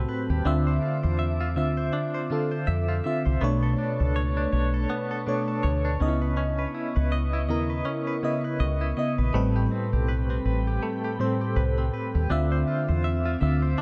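A swung 4/4 groove at 81 BPM sets a late-night, moody tone in this contemporary R&B clip cut from a longer piece, anchored by a round, punchy, foam-muted fingered bass sitting up front. Over it, a mellow, warbling FM electric piano with a phaser carries the accompaniment through minor-ninth chords moving from Dm9 through Bm9, C#m9 and Am9, while a bright, twangy clean electric guitar picks arpeggios through tremolo and digital delay. A glassy, ethereal FM pad holds sustained chords in the background with ensemble chorus and reverb, all within a dark, lightly reverberant production.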